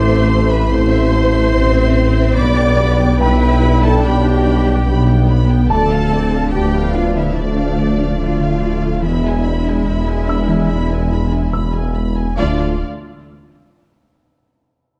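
A cinematic film score that blends orchestra and electronics, this slow, straight passage in 4/4 feels futuristic and vast, cut from a longer piece. Two lush, bowed violin sections carry the melody and a second line above it, their vibrato and smooth top giving the high strings an expressive sheen. A distant viola section and a dark French horn section sit in the background with accompaniment and sustained chords, while a woody cello section, a double bass section with portamento, a roomy tuba and a clean sine sub bass held up front build a deep low end. A very quiet harp-like synth pluck ripples through arpeggios with chorus, phaser and a filter sweep, and a felt-muted upright piano adds soft, intimate texture high above. The harmony moves from Am through G/B and Dm to E7, resolving to Dm at 12.4 seconds. The moderate scoring stage reverb and dark production lend the whole arrangement a spacious, cinematic depth.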